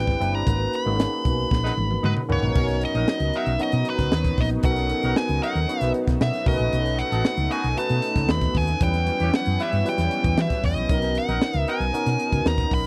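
A straight 4/4 groove drives this upbeat, breezy slice of polished 1980s jazz-funk pop, cut from a longer piece. A crisp fusion drum kit with a punchy kick, a high-tuned snare, hi-hat, toms and crash cymbal anchors it from 0.1 seconds. A round, dark hollow-body short-scale bass, played with the fingers, sounds from the very start. A barky tine electric piano, lightly overdriven through a combo amp and thickened with ensemble chorus, carries the accompaniment. Up front, a nasal lead guitar with a parked wah and overdrive picks out the melody, while a loose, vintage horn section adds a second line between 1.6 and 11.8 seconds. After a band accent and a drum fill open the track, a lush, warbling unison pad with chorus settles in behind at 2.6 seconds over chords moving from Bmaj7 through B7 and Em6, all captured in a dry, close 1970s-style studio sound.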